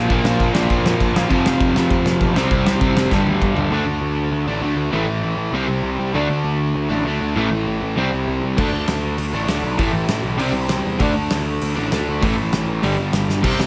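Two bright, distorted electric guitars (one double-tracked up front, one compressed behind it) and a hollow-body overdriven guitar open this energetic, upbeat 198 BPM punk rock excerpt with a driving riff over a growly fuzz bass, all under light reverb. A loose, up-front drum kit with a punchy kick, fat snare and dark cymbals in a pumping room joins at 0.1 seconds, fills into a half-time section at 3.7 seconds, drops out, and returns at 8.6 seconds.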